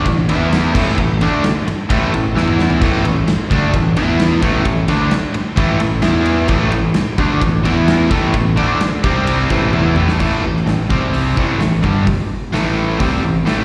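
A bright, crunchy overdriven guitar and a sludgy distorted guitar open this aggressive, heavy hard rock excerpt in A minor at 130 BPM, riffing on E5 and A5 power chords over a growly fuzz bass and a big, dark drum kit with a punchy kick, with drum fills at 2.4 and 9.7 seconds before the progression moves through C5 to A minor, all heard as a live gig through a venue's PA with slapback echo on the guitars and recital hall reverb.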